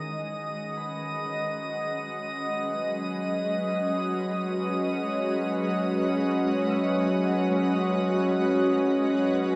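Serene and reflective, this free-time ambient excerpt rests on an Emaj7 chord as a shimmering, ethereal pad with octave-up shimmer fades in up front beside a bright, glassy texture of drifting overtones, alongside a fingerpicked concert harp that also fades in, ringing through delay in the background, while a detuned, wave-folded analog drone joins at 2.4 seconds, all suspended in a vast, echoing space.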